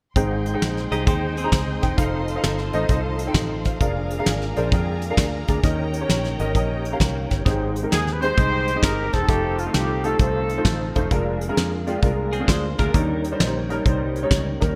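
A swung 4/4 groove at 131 BPM drives this hopeful, uplifting uptempo gospel excerpt in Ab major, carried by a soft brush kit with a fat snare and tight kick up front and a round, foam-muted fingered electric bass. A woody upright piano with long sustain and an ensemble chorus effect plays accompaniment throughout, while a smooth tonewheel organ with key click and a fast rotary speaker holds chords in the background. A lush bowed string section adds sustained chords through the first half, stopping at 7.4 s, and a clean, compressed electric guitar slips in briefly with a picked second line. At 7.9 s a mellow, close-miked trumpet with scooped notes takes the melody alongside a punchy, distant horn section, both carrying digital delay. The progression cycles twice through Abmaj7, F7, Bb7/F and Eb7, framed by light reverb and small room ambience in a bright 1980s-style digital production.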